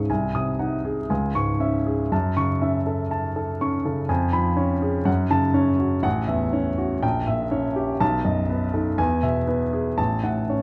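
An intimate, up-front grand piano opens this lyrical romantic character piece in a flexible, rubato 2/4, its audible action noise and natural tone captured by close, detailed microphones over vinyl crackle and the moderate reverb of a recital hall, as the solo spans A1 to D#6 and its harmony drifts through C#m and F#m shadings before settling on E at 9.0 s in this brief, warm passage cut from a longer work.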